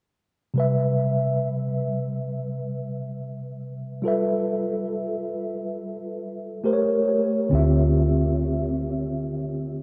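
Soulful and sensual, this slow R&B fragment, cut from a longer piece, drifts along with a gentle sixteenth-note swing. A mellow tine electric piano carries the accompaniment from 0.5 seconds, its clean, up-front tone heard through built-in speakers as it moves through lush extended chords: Cmaj7, G13, A7b9 and finally Dm11. At 7.5 seconds a vintage muted fingered electric bass enters on a single low D, dark, round and punchy with a foam-muted, amped character. The whole mix is soaked in a huge ambient reverb with a long tail, giving it a dreamy, floating quality. The result feels intimate yet hazy, like a late-night groove glimpsed through mist.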